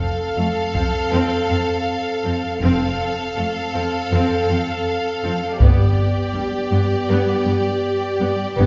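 In a straight 4/4 pulse, this triumphant, majestic cinematic build-up, cut from a longer orchestral film score, sets bowed violins on a smooth, vibrato-laden melody above a focused second violin line and dark, soft-attacked French horn chords. Lush violas sit in the background while cellos carry the bass, joined by a chamber double bass section from 2.6 seconds. A heavy-sticked taiko ensemble, compressed and saturated, strikes briefly near 0.7 seconds and returns at 5.6 seconds as the harmony shifts from F to G, the orchestra ringing in a reverberant hall with a rolled-off top.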